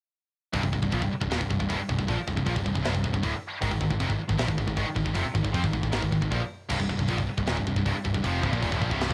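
A small-room home cassette recording carries this aggressive, epic heavy metal excerpt, where three bright, picked, tape-coloured guitars (one overdriven, one scooped and high-gain, one tight and double-tracked) sit in the background riffing from 0.5 to 9.1 seconds over a growly, direct-and-amped picked electric bass and an up-front, tape-dulled acoustic drum kit with a tight kick, medium-tuned snare, hi-hat and crash, moving from C5 to Ab5 power chords before settling on C minor.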